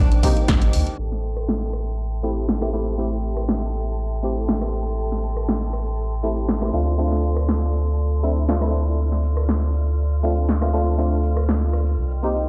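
A round, deep analog bass sits up front in this hypnotic, late-night deep house cut in A minor at 120 BPM, swinging lightly on the 16ths and pumping with sidechain alongside a hollow, percussive organ stab with chorus and delay, a moody, nasal pad and a woody violin section in the background, over chords moving from Cm7 to Am7 and Dm7. A punchy analog drum machine plays hi-hat, rim click and snare through low-pass filters, while an electronic kick sounds only from 0.2 to 0.6 s and a grainy, very quiet cabasa joins at 1.0 s, when filter sweeps begin on the drums and the stab. The whole excerpt sounds as if played on a big sound system in a bare stone room, with light reverb and a muffled low-pass edge.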